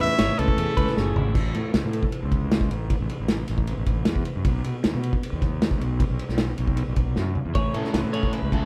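Intricate and wistful, this short cut from a longer math rock and midwest emo piece captures a band playing live together in one room with light reverb. A bright solo trumpet with vibrato and a smooth top opens with a brief pop-style melody through tape echo, over a clean, compressed twelve-string electric guitar with spring reverb and a second twelve-string picking arpeggios in the background. A fuzzy, growly fingered bass sits up front with overdrive and punch through the whole passage, while a loose acoustic drum kit with dark cymbals, a tight kick and a medium-tuned snare enters at 0.2 seconds and drives the music, adding fills around 1.0 and 7.2 seconds. After the opening, the trumpet and the arpeggiated twelve-string fall away, and the accompanying twelve-string drops out by 2.9 seconds, leaving bass and drums to carry the harmony from A to B. Near the close, both twelve-strings return on an Amaj7 chord, joined at 7.7 seconds by a double-tracked, overdriven semi-hollow guitar riff.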